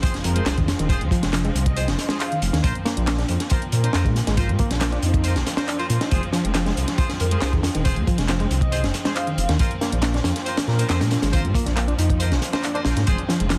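Breakbeat at 138 BPM in F minor, this funky, raw clip is cut from a longer piece, driven by a crunchy, up-front acoustic break kit with a punchy kick and high-tuned snare, layered with a tape-warm garage kit of handclaps and hi-hat, while a deep, rumbling detuned saw bass saturates the low end from 0.2 seconds. A very quiet sub drop marks the opening impact, horn stabs with light vibrato echo through delay, a reedy electric piano riff enters at 0.4 seconds, and a bowed string section holds sustained chords in the background with sidechain pumping. An airy, dreamy lead with chorus and a small-speaker tone floats softly behind until 12.3 seconds over Fm and Bbsus2 chords, all sealed in a dense, heavily limited master with light room reverb and vinyl crackle.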